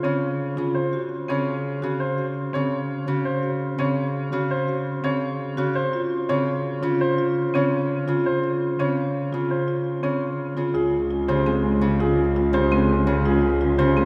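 Straight eighth notes grouped in 7/8 drive this propulsive, bright piece of minimalist classical pattern music, cut from a longer work. A ringing, fingerpicked Celtic harp sits up front with the accompaniment, woody rosewood-barred marimba arpeggios played with medium mallets ripple above it, and a clear baby grand piano carries a quieter melody with long sustain. At 10.8 s the harmony settles onto a major-seventh chord, and the bass arrives just before it at 10.7 s as a single bowed cello, warm with vibrato and expressive portamento, all held in a wet, long church reverb.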